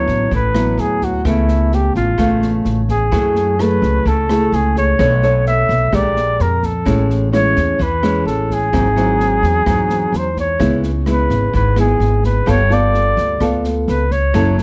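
A dark, warm production with light reverb frames this romantic, sunny bossa nova excerpt, cut from a longer piece and moving at 128 BPM in a straight 4/4. Up front, a mellow flugelhorn carries the melody between E4 and E5 in a vintage jazz style, its vibrato and scooped notes giving the line a tender, singing quality. A thumb-plucked nylon-string guitar supplies dark, classical-toned accompaniment across a range from G#2 to C#5, while a woody upright bass, played pizzicato on steel strings and also placed up front, anchors the low end from F#1 to F#2. An open jazz drum kit enters at 0.1 seconds, sitting lower in the mix with a boomy kick, rim clicks and a medium-tuned snare, its smooth, rolled-off top suggesting a small room. The harmony drifts through rich jazz colours, starting on D69 and passing through C#7alt, F#m9, Bm9, Bb6, Amaj7 and G#aug7 before settling toward C#m7 and G9.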